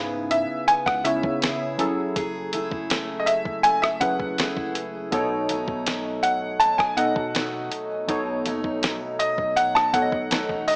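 Moody and sensual, this contemporary R&B excerpt at 81 BPM in 4/4 sets a brilliant, up-front concert grand piano melody over warm analog keys with chorus, picked steel-string acoustic guitar arpeggios through digital delay, and a deep, long 808-style bass in the background, while a gritty, thumpy sampler-style soul drum kit of kick, fat snare, rim click and hi-hat enters with the piano at 0.3 seconds, the harmony moving through C#m7, F#m9 and B7 with light reverb and a small-speaker sound.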